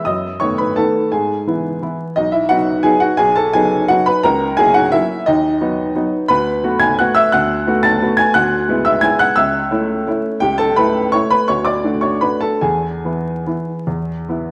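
A 3/4 waltz pulse, pushed and pulled by rubato, drifts between roughly 140 and 185 BPM in this short classical piano excerpt, cut from a longer piece. The mood is elegant and graceful, carried by a single upright piano playing solo from 0.0 to 14.5 seconds across a range from B1 up to A6. Its tone is clear, woody and natural, with short sustain, and it sits up front in the sound. The harmony moves through B7/F#, E/G# and B before passing through F#7/C# and B/D#, then settles into A major from 6.3 seconds by way of Bm7/D, E7/D, A/C#, A7/C#, D and E. A wet recital hall reverb with a 1.7-second tail surrounds the instrument, while a layer of vinyl crackle lends the recording an aged patina.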